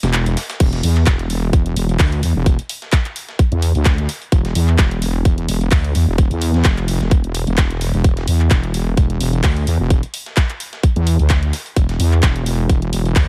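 Bass house with a gritty, swaggering feel and lightly swung sixteenths, built on a heavy, saturated, detuned sawtooth wobble bass with chorus and sidechain pumping that sits up front alongside a tight electronic kick entering at 0.6 seconds, while a layered garage kit of crash, handclaps and hi-hat and a very quiet, overdriven sampler-style breakbeat kit of hi-hat and snare fill out this dry cut from a longer track.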